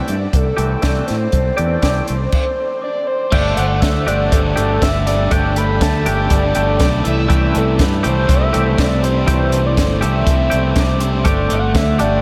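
A gritty, screaming overdriven synth lead with phaser and diffuse ambient delay carries the melody in this carefree, upbeat indie rock passage at 121 BPM, cut from a longer piece, over a bright, twangy clean guitar riff with analog chorus, a growling, overdriven fingered bass and a punchy compact cocktail drum kit with a high-tuned snare and dark cymbals, the bass and drums both up front; a soft, bell-like glockenspiel with rubber mallets enters in the background at 2.8 s and an overdriven electric guitar riff joins at 3.3 s as the harmony moves between C6 and Gsus2, all soaked in a dreamy, huge ambient reverb.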